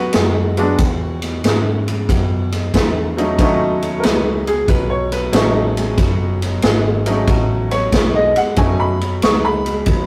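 A rough rehearsal-room recording with tube saturation and light reverb gives this short electric blues shuffle a gritty, laid-back character. It moves at 92 BPM in 4/4 in B mixolydian, with a 68% swing on the eighth notes, and the chords pass from B7 to E at 0.8 seconds and back to B7 at 3.4 seconds. Up front, a brilliant, woody upright piano plays the accompaniment, polished and present. The swinging big-band drum kit is equally forward, with a punchy kick, a medium-tuned snare and ride cymbal heard in a big, natural room. Underneath, a vintage fingered electric bass sounds dark and round, its foam-muted tone amped. In the background, a twangy picked electric guitar through a small old amp plays a low riff, its tone slightly broken-up.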